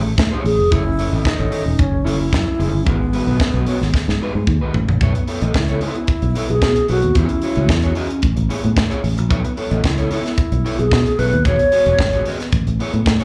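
This short cut from a longer piece sounds like a live gig heard through the venue's PA, with a touch of club reverb but little overall room sound. It's sultry, driving disco at 112 BPM in a straight 4/4, moving through lush chords such as Amaj7, B9sus4 and E69. A fingered electric bass sits up front with a dark, round, foam-muted tone. Alongside it, a tight funk drum kit plays hi-hat, kick, snare and toms with a high-tuned snare, and its fill from 3.9 to 5.0 s leads into the second section at 5.0 s. The melody belongs to an airy, hollow alto flute with a soft attack, vibrato and slapback echo, entering at 0.5 s and stopping at 12.3 s. Lower in the mix, an electric guitar at the edge of break-up adds slightly gritty, fingered accompaniment, coloured by subtle chorus and its own slapback echo.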